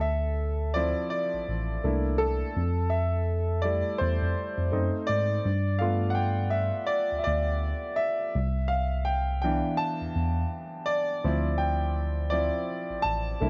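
A clear grand piano and a tine electric piano start together at 0.0 seconds in this smooth, soulful neo-soul and R&B piece, cut from a longer work and set in D dorian at an unhurried 83 BPM in 4/4 with a gentle 16th-note swing. The grand piano carries the accompaniment and takes the featured solo across the whole 13.5 seconds, its natural, up-front tone ringing between E3 and A5. Beneath it, the electric piano plays the bass line from A1 to G#2 with a worn, slightly out-of-tune character that still sounds clean and direct. The harmony moves from Dm9 through C13, Fmaj7, F#dim7 and a long G9 before settling on Cmaj9 and returning to Dm9 at 11.2 seconds. Light reverb and a warbling old-cassette quality, with its drifting pitch, give the whole recording a faded, lived-in feel.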